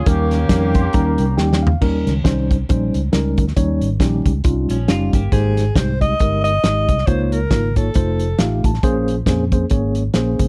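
A swung, uptempo gospel groove in four drives this hopeful, soulful piece, with a gritty, saturated soul drum kit up front in a pumping room, a dark, round fingered electric bass and a mellow tine electric piano adding fills, while a punchy horn section states the melody briefly at the start, a clean, picked electric guitar with lush chorus slips in a short second line at 4.7 seconds, and a breathy alto saxophone carries the melody from 5.3 seconds, all set in studio reverb.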